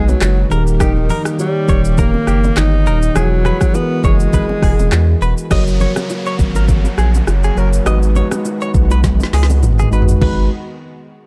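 A relaxed afrobeats groove at 102 BPM in 4/4 with a light swing on the sixteenths, this short cut from a longer G# minor piece feels sultry and mellow. The produced electronic kit sits up front with a deep kick, woody snare, smooth hats, rim clicks, shaker, handclaps, toms and crash, while very quiet bongos and congas add ringing, close, soft-handed acoustic color. Beneath them a thick, saturated sine sub bass with a fast attack holds the low end prominently, and a mellow tine electric piano, heard through its built-in speakers, comps alongside a lush, detuned sawtooth unison pad with chorus that sits in the background. A bright, twangy, direct-recorded clean guitar picks a compressed, scooped riff high up, touched with subtle chorus and digital delay. The breathy, whispered alto saxophone carries an intimate pop-style melody with vibrato and scooped notes through a digital delay, dropping out at 5.2 seconds, after which an electronic downlifter enters and a drum fill arrives at 9.0 seconds over chords moving from G#m7 through D#, Eadd9 and F# back to G#m7, all set in a dark digital ambience.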